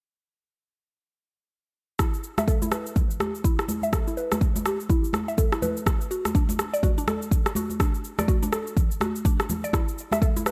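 A woody, round FM synth pluck opens at 2.0 s, spinning E minor arpeggios through a filter sweep, its fast-attack tones colored by chorus, phaser, 12-bit sampler grit, digital delay and sidechain pumping, alongside a deep, up-front electronic kick and a layered electronic rim click and cabasa. Bright, thin-skinned congas with a small-room acoustic character join at 2.4 s, completing a hypnotic, earthy afro house groove at 124 BPM in 4/4 with a 60% sixteenth-note swing. Light reverb surrounds this short excerpt cut from a longer piece.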